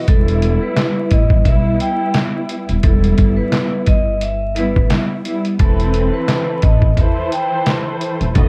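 Reflective and moody, this swung boom-bap hip-hop fragment at 87 BPM in E harmonic minor sets lush, bowed studio strings with a cassette-tape tinge against a bright, ringing vibraphone melody, played with medium hard mallets and touched by analog delay, over a woody pizzicato upright bass and an up-front, muffled, pitched-down sampler-style drum kit of thumpy kick, snare, hi-hat and handclaps, in a dark, dry production dusted with vinyl crackle as the harmony moves from Em to Amadd9/E at 5.6 seconds.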